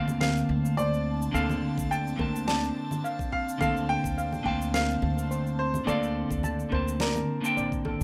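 A relaxed 106 BPM groove in 4/4 with a light sixteenth-note swing sets this blissful sunset chillout excerpt in Bb major, resting on a single Bbmaj9/D chord, with electronic congas, cabasa and a deep snare entering at 0.1 s and a knocking electronic kick joining at 1.8 s, both in a small room reverb, under a woody pizzicato upright bass. A clear baby grand piano carries the melody with tape echo, while an up-front, dark clean electric guitar plays accompaniment and a shimmering steel pan arpeggiates in the background from 0.2 s, both also touched by tape echo. An airy, breathy pad with a slow attack holds sustained chords through chorus and phaser, all in a moderate studio reverb with a rough home-demo feel.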